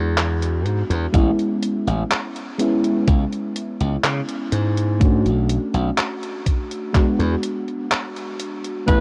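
A mellow FM electric piano and a glassy slap bass open this melancholic, nostalgic vaporwave excerpt at a slow 62 BPM in straight 4/4. The piano sounds soft, round and dark, colored by analog chorus and tape echo, while the bright, punchy bass sits up front beneath it. A detuned 8-bit drum machine adds handclaps and hi-hat from 0.2 seconds, and a thumpy, sampler-style electronic kick joins at 1.1 seconds with a small-room character. The harmony moves through E9, Amaj9, C#m7 and Bm9 before settling on a rootless E9. Just at the close, at 8.9 seconds, a breathy, whispered alto saxophone touches a single B4, and the mix is wrapped in light reverb and the warbling pitch drift of worn cassette tape.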